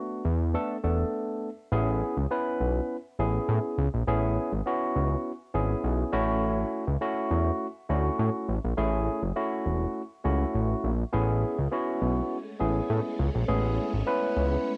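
Recorded at home on cassette with light reverb, this smooth, danceable funk fragment puts a barky, clean tine electric piano through a combo amp up front beside a fat, detuned sawtooth analog bass, drops into a brief break at 1.1 s before settling on major-ninth chords, and brings in a shimmering, bright string machine of violins with ensemble chorus and a tape tint at 11.1 s.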